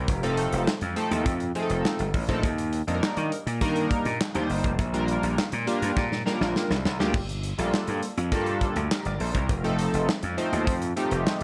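A straight 4/4 groove at 102 BPM drives this danceable, smooth slice of early-eighties boogie funk, cut from a longer piece, with a modern studio drum kit of tight kick, medium-tuned snare, hi-hat, handclaps and crash cymbal sitting up front in a small room and breaking into a fill from 6.0 to 7.1 seconds. A gritty slap bass, bright, punchy and overdriven, holds the low end while a retro, glossy chorused polysynth blends pulse, sawtooth and square waves with a sub octave and filter sweep into sustained chords. The harmony moves from F7 through Ebmaj7, Bb6 and Gm9 before returning to F7.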